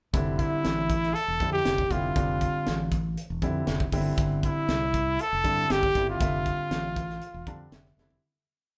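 A clear, close-miked trumpet leads this bright, soaring electric jazz fusion piece, spinning a motif-based solo melody with light vibrato from 0.4 to 7.7 seconds at a straight 119 BPM in F major. Beneath it, a polished grand piano pushes quartal chords through Fmaj9, Gsus4 and Fmaj7, a growly fingered electric bass plays a syncopated riff, and a tight acoustic kit with a high-tuned snare drives a funk groove, the band sharing a moderate stone room. The piece fades out from 6.2 seconds, with a piano fill near the close and a drum fill at the very end.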